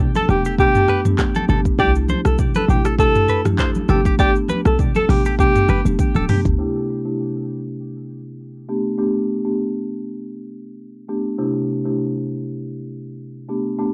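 A home cassette recording with a soft, muffled top end and light reverb, this sunny, romantic afrobeats excerpt moves at 100 BPM in 4/4 with a gentle swing on the sixteenths, cycling between Gadd9 and C6 chords. A marimba played with medium mallets sits up front with a warm tone and carries the accompaniment through the whole clip. An electronic afro-pop drum kit with a deep kick, metallic hi-hats, handclaps, rim clicks, shaker and toms drives the groove alongside a punchy, tight 808-style bass with a quick, decaying sine tone. Over them a warm alto saxophone sings a brief, vibrato-laden pop melody that sounds distant and roomy, touched with tape echo. A bright, twangy clean electric guitar, compressed and recorded direct, picks a riff through phaser and tape echo, while bright, saturated congas played with soft hands sit in the background. The saxophone fades out first at 5.8 seconds, and the guitar and congas stop at 6.4 seconds. 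After a drum fill, the kit and bass drop out at 6.6 seconds, leaving the marimba alone under a filter sweep until 13.9 seconds.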